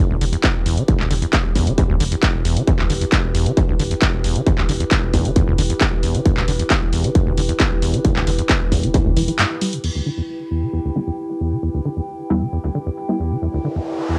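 A squelchy, resonant sawtooth acid bass riff opens this dark, hypnotic peak-time techno passage, taken from a longer piece, as a warbling, nostalgic pad fades in behind it, both pumping with the sidechain under a lo-fi cassette sheen. A distorted, up-front kick, a drum kit of warm hi-hats, handclaps and crash cymbal, and a thick, saturated sub bass drive the groove until a break at 9.4 seconds, after which the acid bass gets a filter sweep. Muted, detuned dub chord stabs with phaser and tape echo arrive at 11.0 seconds, and an electronic riser fills the closing moments.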